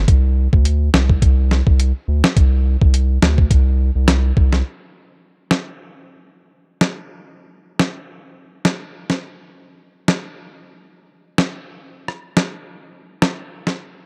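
Dark, dry production puts a sunny, bouncy dancehall groove up close, moving at 105 BPM in 4/4 with a light 16th-note swing. A round, deep analog bass with a fast attack and sustained, sine-like body sits low and up front until 4.6 seconds. A muffled, pitched-down, sampler-style drum kit with a tape-warm, compressed character carries on to 13.8 seconds, with a thumpy kick, medium-tuned snare, rim click and hi-hat.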